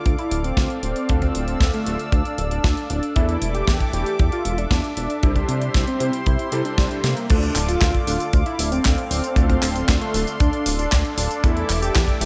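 Nostalgic and bittersweet, this italo disco excerpt moves at 116 BPM in D minor, with a thick, detuned sawtooth unison lead carrying the melody over a smooth, chorused analog pad and a glossy pulse-wave synth bass with a plucky filter. A tight, dry acoustic kick sits up front beside a sampler-style 12-bit drum machine of snare, handclaps, hi-hat, tambourine and crash, and a drum fill at 7.0 seconds leads into the second section at 7.3 seconds. A clangy vintage electric grand piano enters at 1.1 seconds with background stabs through ensemble chorus and digital delay, all set in a bright 1980s-style digital production with light reverb.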